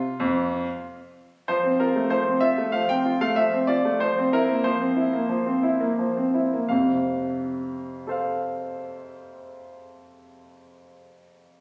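A bright baby grand piano plays alone throughout this short cut from a longer classical-period sonatina, its brilliant, open tone sitting up front and spanning F2 to G5. The mood is serious and restless, in 4/4 with a rubato feel, and the pace slows from 0.2 s until 6.7 s. The harmony rests on F, passes through C7/F at 4.0 s, and settles back on F at 6.7 s, where a new section begins. The piano sounds as if captured on a phone in a recital hall, wrapped in a wet, lingering reverb with added club reverb and compression. The sound stops at 11.6 s.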